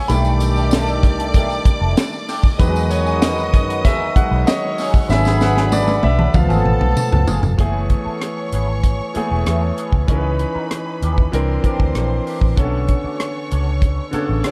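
A tight funk drum kit with a high-tuned snare and a round, foam-muted fingered electric bass sit up front in this bittersweet, smooth 1970s-style soul excerpt at 96 BPM, where a clear grand piano with long sustain takes a solo until 7.6 seconds, a drum fill arrives at 5.1 seconds, and distant, roomy horn stabs end at 7.3 seconds, while lush bowed strings with tape echo carry a second line, a jingly tambourine sits in the background, and a twangy, slightly broken-up electric guitar riff with wah and spring reverb sits behind them in a dark, warm production.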